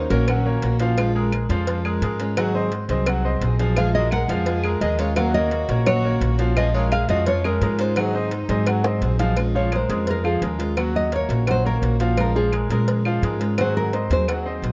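A growly, woody upright bass sits up front in this nostalgic, sultry Cuban son and guajira excerpt in Bb minor at 171 BPM, its pizzicato steel strings anchoring a brilliant concert grand piano's arpeggios and a picked parlour steel-string acoustic guitar with fresh strings. A full-bodied, fingerpicked nylon-string guitar carries the melody, joined until 9.0 s by a floating, sul tasto violin section in the background, then takes a solo from 9.4 s, while tight, high-tuned cowbell and bongos played with soft hands and close, dry claves fill out the percussion. Light reverb and a dark production round out the sound.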